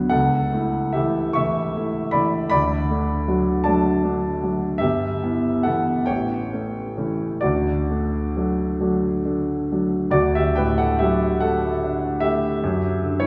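Tender and nostalgic, this excerpt from a romantic classical nocturne for solo piano drifts in a slow, rubato 12/8 in D major at roughly 42-54 BPM, its harmony moving from A/C# through D, Em/G and A7 back to D before settling on D/F# near 12.6 seconds. The grand piano sounds smooth and vintage, sitting up front across a span from G1 to C#6 and playing alone for the full 13.3 seconds. A wet concert hall reverb with a 1.9 s decay places the listener further back in the room, alongside a small room ambience.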